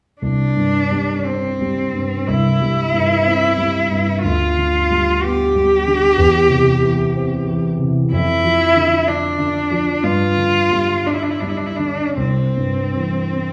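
A bowed cello and a dark concert grand piano begin together at 0.2 seconds in this serene, romantic classical duo, a short passage cut from a longer piece. The single cello carries the melody in a compact middle register, its tone warm and expressive, shaded with vibrato and portamento, sitting up front yet with a slightly distant quality. Beneath it, the piano supplies mellow, smooth accompaniment reaching down into deep bass, its vintage-sounding notes carrying a short sustain. The pulse is flexible and unhurried, with uneven beats and rubato giving the phrasing a breathing, rhapsodic feel. The harmony moves from C through G7/D, C/E and Dm/F to a bare G5 before settling back on C at 12.2 seconds, and both instruments ring out in a lush recital-hall reverb that lends the church or concert hall space a glowing, reflective calm.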